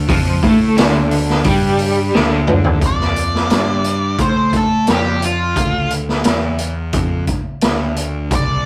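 A straight 4/4 groove drives this smoky, heavy blues rock power trio and southern rock excerpt, with a fuzz-soaked picked bass and a boomy, gritty garage drum kit up front, a bright, double-tracked overdriven guitar riff with tremolo opening the excerpt until 2.8 s as a drum fill closes that passage, then a dark octave-fuzz lead guitar with wah and distortion carrying the melody from 2.9 s, all in a rough rehearsal-room sound with light reverb and tube saturation.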